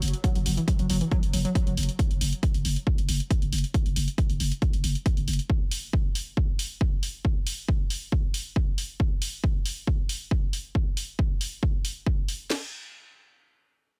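A straight 4/4 drive of overdriven, layered techno drums, with a heavy kick, cracking snare and crash cymbal up front, runs alongside tape-warm electronic hi-hats until about 12.6 seconds in this relentless, hypnotic peak-time techno excerpt, while a growling, buzzy 808-style bass pumps against the sidechain through a low-pass filter until 5.4 seconds and a screaming, guitar-like sawtooth lead with distortion, vibrato, subtle chorus and digital delay cuts in briefly near the start, the mix sitting in a digital ambience.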